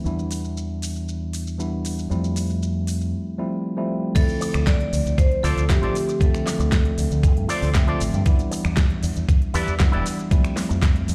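Sleek and sensual, this nu-disco excerpt moves at 117 BPM in a straight 4/4, with D dorian chords cycling through Em7, Fmaj7 and Dm7. A clean tine electric piano, pumping under sidechain through a low-pass filter, rides over a punchy, envelope-filtered fingered bass and a layered pop kit with a fat snare, crisp hats, finger snaps and shaker. At the drop at 4.2 seconds, a thumpy, tape-warm electronic kick comes up front and a ringing hard-mallet vibraphone melody sounds until 7.7 seconds, with a twangy envelope-filtered guitar riff entering just after at 4.4 seconds with subtle chorus and delay, all in a dry mix that carries a faint stone-room echo of a big system in a bare space.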